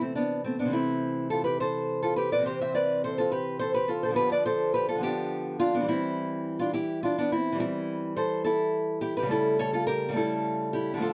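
In a rubato 12/8 at 70 BPM, counted in dotted quarters, this flowing, introspective baroque-style classical dance is carried by a solo fingerpicked nylon-string guitar with fresh strings, tuned to A4 = 437 Hz and ranging from C3 to E5. The small, up-front guitar tone sits in a dry, close 1970s-style studio sound touched by light reverb. Across this 11.1-second excerpt from a longer piece, the harmony moves from Am/C to G7/D at 4.2 s, C/E at 5.9 s and A7/C# at 9.3 s.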